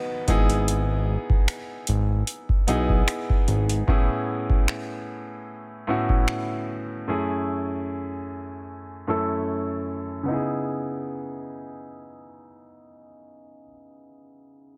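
Moody and late-night, this contemporary R&B fragment in C# minor moves at 75 BPM with a light sixteenth-note swing, built on Emaj7/G#, Amaj7, F#m9 and C#m7 chords. A clear, natural concert grand piano carries the harmony up front, its deep low end softened by a low-pass filter sweep, while a very quiet electronic downlifter sits underneath at the start. A fat, detuned sawtooth analog bass with a fast attack and its own filter sweep drops out by 3.8 seconds, and a booming, overdriven analog drum machine with a deep kick, metallic hi-hats and finger snaps stops at 6.5 seconds, leaving the piano alone until 14.8 seconds in a dry, close sound.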